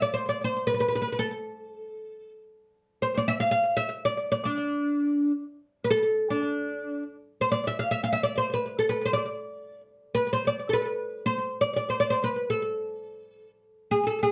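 Unfolding in free time, this hypnotic, soulful fragment of an Arabic maqam performance features a lone oud, its woody, fretless tone and plectrum-plucked double strings sitting up front. A short slapback echo trails the oud's phrases inside a modest small-room ambience, and the passage falls into two matching statements, the second beginning at 7.2 seconds before the clip ends at 14.3 seconds, cut from a longer piece.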